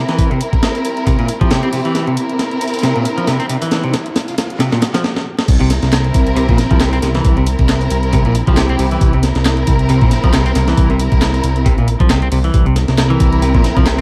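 A swung, gritty breakbeat groove at 136 BPM drives this funky, dark excerpt, with a compressed, pitched-up sampler kit up front (thumpy kick, high-tuned snare) over a faint overdriven drum machine's handclaps and hi-hat, a fat detuned sawtooth bass, a bright, clean hollow-body guitar riff, and distant, lush bowed string stabs carrying sampler grit and dub echo, while a very quiet riser and drum fills build toward the drop at 5.5 seconds, all under vinyl crackle.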